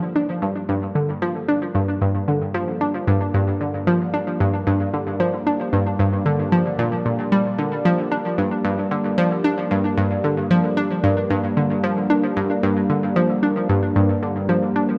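Cosmic and mysterious, this ambient, sequencer-driven space music moves at 113 BPM in a straight 4/4, resting on a G minor chord throughout this short portion cut from a longer piece. An analog pluck carries a riff from the opening to 14.9 seconds, sitting up front with a round, ring-modulated character, a fast attack and short decay, and a filter sweep, set in chorus and tape echo. Beneath it, a sweeping resonant pad holds sustained chords between G3 and D4, its detuned sawtooth tone evolving through a slow attack, filter swell and long release, thickened with chorus. The pad fades in over the full 15 seconds, gradually drawing the sustained layer into view. A wet concert hall reverb with a 2.4-second decay surrounds the parts, lending the sound a vast, drifting depth.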